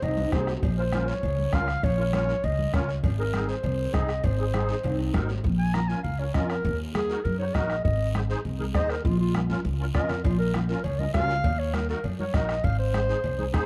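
Fiery and driving, this cumbia cut opens with a dark, classical-style clarinet up front over a woody pizzicato upright bass, thick-skinned congas and a raspy guiro, joined at 0.3 seconds by a reedy, shimmering musette accordion and a soft-beaten vintage bombo, while distant, ringing cowbell and timbales drop out at 5.4 seconds as the clarinet takes its solo and return at 10.2 seconds, all in a dark production with light reverb.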